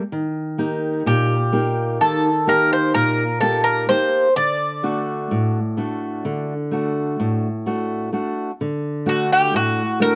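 A metallic, doubled-string Greek bouzouki carries the melody up front from 1.1 seconds, its picked line touched with slapback echo and some octave-doubled strings, in this wistful, dark Greek folk excerpt in a straight 9/8. Beneath it, a dark, fingerpicked steel-string acoustic guitar with an auditorium body plays the accompaniment from the very start, moving from Eb to D. The outdoor recording is dry, with a muted top end that softens the sparkle of the strings.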